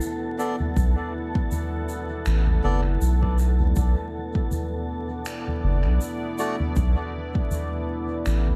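Ambient dub in a deep, hazy mood, cut from a longer piece and resting on a single Bm7 chord, with a moody, detuned sawtooth pad carrying chorus and reverb while an airy, wind-like noise texture hovers in the background. A soft-mallet kit of finger snaps, shaker and toms, plus reedy, nasal melodica stabs entering at 0.4 seconds, are both steeped in dub echo. From 0.8 seconds a round, up-front sub bass and a tape-warm electronic kick anchor the low end, all wrapped in an echo-heavy mix with vinyl crackle.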